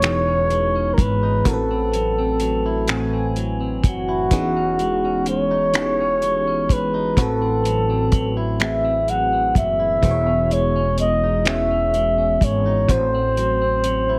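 Slow, tender six-eight R&B at 42 BPM in E major, cut from a longer piece, where a breathy, whispered flugelhorn carries the melody up front with light vibrato, slapback echo and plate reverb, a twangy clean electric guitar adds a second line, a glassy, bell-like FM electric piano warbles through chorus and plate reverb on Emaj13 and Am6 chords, a woody, growly pizzicato upright bass anchors the low end, and a cloth-damped, thuddy drum kit with finger snaps, hi-hat and a tight kick sits dry and dark in a moderate studio room with a heavily compressed radio sound.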